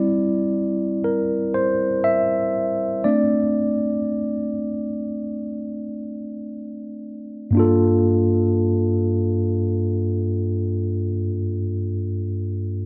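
Bathed in a moderate plate reverb, this moody, late-night R&B excerpt features a mellow, clean tine electric piano heard up front through its built-in speakers, playing alone from 0.0 to 7.5 seconds and continuing to 12.9 seconds with lightly swung sixteenths over D9sus4/G, Amadd11 and Gm9 chords.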